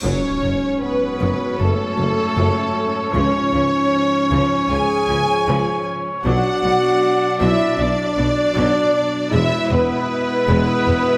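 A distant, roomy French horn section holds sustained chords at the front of this epic, heroic cinematic excerpt in F# minor at 78 BPM, while a smooth violin section carries the melody over a lush second violin line and close, focused violas. A clear solo trumpet adds stabs, a tight trombone section fills out the chords, and a mellow, very quiet tuba joins woody double basses and even-toned cellos on the bass as the harmony moves from F#madd9 through C#, Bm and E. A huge, bright cymbal swell and impact opens the passage, hard-mallet calf-head timpani strike at 3.1 seconds, and a wet scoring-stage reverb surrounds the orchestra.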